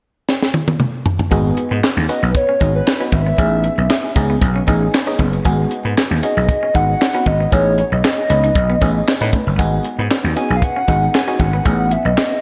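Slick and danceable, this early-eighties boogie funk excerpt moves at 116 BPM in G# phrygian, opening with a drum fill on a tight, dry kit of high-tuned snare, tight kick, hi-hat, toms and handclaps before a growly, amped slap bass, glassy bell-like FM electric piano and a twangy guitar at the edge of break-up, set back in the mix, enter at 1.3 seconds. From 2.1 seconds a hollow, woody clarinet-like synth lead carries the melody with vibrato over a vamp alternating G#m7 and Amaj9#11, the keys, guitar and lead all colored by chorus and slapback echo, with phaser on the piano and lead. A lush hall reverb gives the whole a big arena sound.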